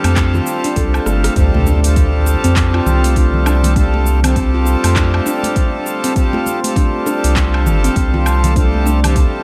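Meditative and mystical, this organic downtempo excerpt in D minor moves at 100 BPM with a swung 16th feel, as a reedy, breathing pedal harmonium pumps beneath ringing, airy handpan arpeggios, both carrying tape echo, while a round sine sub bass sits up front. An overdriven deep house kit with metallic hats, handclaps, rim click, shaker and woodblock plays from the start and is joined at 0.2 seconds by an overdriven electronic kick, with bright, hard-hand congas and bongos tucked into the background. After a drum fill, a very quiet electronic impact lands at 1.4 seconds as the harmony moves from Csus4 to Dm, all bathed in a dreamy plate reverb.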